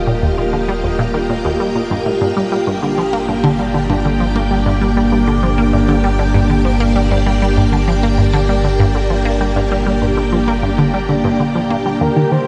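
Bathed in a dark, shimmering reverb with an 8.6-second tail, this hypnotic, expansive ambient passage in G minor at 98 BPM sets lush, phased string-machine chords up front over a round, deep analog bass and a juicy, squelchy resonant blip pluck riff with phaser and analog delay, moving from Ebadd9 to Gm, until a breathy, flute-like synth lead with tremolo and chorus enters at 12.0 seconds just before the cut.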